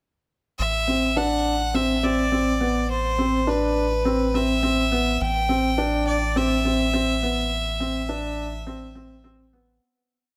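Piano and strings electronica at 104 BPM in A dorian, moving and melancholic, in which a soft, thick-felt upright piano ostinato sits up front from 0.9 seconds beneath a clear, airy-bowed solo violin tracing arch-shaped motif phrases with light vibrato, over a round, deep analog bass sustaining the root, the short piece set in a moderate echo chamber reverb as it builds from 0.6 seconds and fades out from 6.7 seconds.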